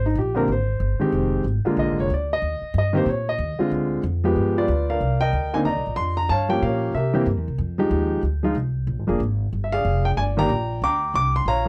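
A relaxed, sophisticated jazz piece in swing at 186 BPM opens with a grand piano taking a solo over a pizzicato upright bass. The piano carries the melody with an intimate, natural tone, the sound of its action audible up close, while the woody, steel-strung bass holds the low end. The harmony moves through rich Eb major changes such as Abmaj9, Fm7 and Bb7 before turning toward C minor at 5.0 seconds. From there the progression darkens through Cm9, Gm7b5 and C7, then settles on rootless Bb7 and Ebmaj7 voicings near the close. The dry, close studio sound has a 1970s character, with both instruments placed up front and very little reverb. The recording is cut from a longer piece.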